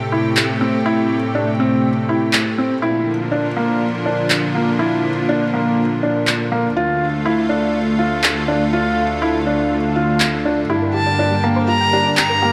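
A felt-muted upright piano, intimate with audible action noise and a touch of tape echo, carries a riff at the front of this melancholic, moving piano and strings electronica excerpt at 122 BPM, moving through Am7, Bb, Dm and Gm. A thick, detuned sawtooth pad with chorus holds sustained chords while a reedy, gut-string cello section plays the bass line and tape-warm electronic handclaps sit up front, all bathed in a huge ambient reverb. At 10.7 seconds a round, mellow pluck adds arpeggios in the background, and at 10.9 seconds a dark, woody violin enters with a melody touched by light vibrato.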